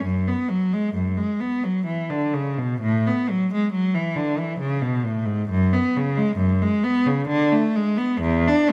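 A close, rich solo cello, bowed by a single player with smooth vibrato, opens this serene, flowing fragment of a baroque-style classical suite movement in F# minor, moving at a rubato 66 BPM in 3/4 across its 8.7 seconds and ranging from E2 to D4 inside the moderate reverb of a stone room.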